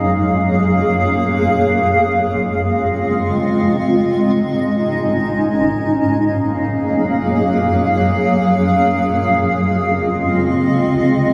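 Dreamy and blissful, this short cut from a longer hip hop piece drifts in free time, centered on G-flat lydian. A lone granular cloud pad carries the whole 11.3 seconds, spanning Gb2 to F5 with a cloudy, blurred texture built from unison triangle tones that are wave-folded into something mellow and evolving. Its slow attack, long sustain and long release let each chord melt into the next, while its own built-in reverb adds to the haze. The harmony moves from Gbmaj7 to Dbmaj7, then Absus4, back to Gbmaj7 at 6.1 seconds and on to Dbmaj7 again. A huge ambient room with a long decay surrounds the pad, yet it stays up front in the mix.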